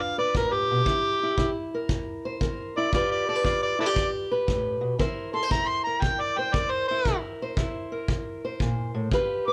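Heard from the first moment, an amplified, overdriven harmonica takes a gritty, swaggering solo over a fingerpicked steel-string acoustic guitar in this soulful acoustic country blues, cut from a longer piece. The harmonica sits up front with a light vibrato, scooped notes and tongue slaps, phrasing in a jazz style. The parlour guitar accompaniment is dark and boxy, moving between G7 and C7 chords under a swung feel in four. A tight acoustic kick drum, played with brushes and carrying a roomy studio character, enters at 0.3 seconds and continues until 9.3 seconds. A moderate small-room reverb gives the performance a close, intimate setting.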